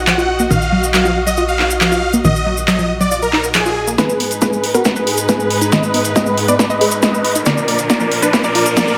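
Uplifting trance at 138 BPM, driving and bittersweet, this short cut moves from Ebmadd9 over Bb to Abm and then Bb. A clear, biting symphonic string section holds sustained chords throughout. A huge, euphoric supersaw lead carries the melody through a low-pass filter and dub echo, while a detuned unison pluck spins arpeggios. Both pump with sidechain, as do the strings and a plucky, wave-folded analog bass that plays only until 4.0 seconds. Up front, an overdriven analog drum machine drives punchy snare, handclaps and hi-hat, with grainy acoustic maracas underneath. From 4.0 seconds a tape-warm electronic kick and a second, quieter pluck line join a build-up with a drum fill and filter sweeps on the plucks and the supersaw, and a background riser enters at 6.1 seconds, all set in a lush hall reverb.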